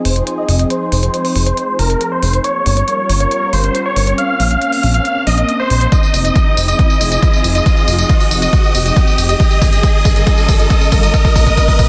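A lush, detuned unison pad opens this euphoric yet bittersweet uplifting trance build-up in F minor at 138 BPM over an Fm7, Gm7b5 and Bbmadd9 progression. It is quickly joined by a huge, bright supersaw lead carrying the melody through a filter sweep and dub echo, a fat, nasal analog bass, crisp electronic hi-hats with tambourine, and a background riser from 0.5 seconds, with the pad, lead and bass pumping to the sidechain. A punchy, up-front kick and drum fill arrive at 5.9 seconds, all within a dense, heavily limited master touched with light digital reverb.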